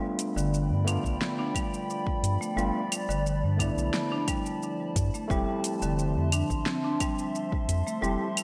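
Organic downtempo at 88 BPM in G mixolydian, peaceful and earthy: woody marimba arpeggios with delay and a gritty, overdriven tine electric piano through a combo amp, carrying delay, slapback echo and sidechain pumping, sit over a warbling, nostalgic lo-fi pad with chorus, phaser and pumping, a round, dark analog bass that also pumps, a deep house kit of claves, metallic hi-hats, shaker and fat snare, and a deep electronic kick that joins at 1.0 s, the mix set in a lush hall reverb with a big arena sound as the chords move from G7 to Fmaj7 at 5.3 s.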